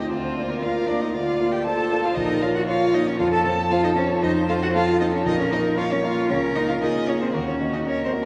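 A quick classical-period movement for piano quartet in Bb minor, this short passage, cut from a longer piece, moves at 116 BPM in a straight 4/4 with a restless, dramatic mood. All four parts play together throughout its 8.3 seconds, beginning at 0.0 s. One violin carries the melody with a focused, distant tone and vibrato, while a second violin adds a smooth, even line with a mellow vibrato above it. Up front, the cello bows a rich, velvety second line. The grand piano, also close, supplies accompaniment with a short sustain. A cathedral-like reverb with a long 4.6-second tail surrounds the ensemble, giving it the wet resonance of a church or concert hall, as the harmony shifts from Bb/D through Bbm and F toward Ebm at 7.3 s.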